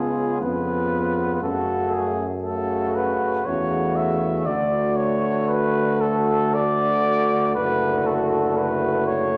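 A brass band opens on a C#7 chord and settles into F# minor for an elegiac, yearning, hymn-like passage in 3/4, around 59 BPM with a rubato feel, cut from a longer classical piece. Up front, a punchy cornet carries the melody with light vibrato, while a distant flugelhorn sings a second line, and a roomy trombone section and a bright solo trombone, set in the background, fill in the accompaniment above a warm tuba bass. The wet recital hall reverb lends the band a resonant glow as the harmony moves through D to D/F#.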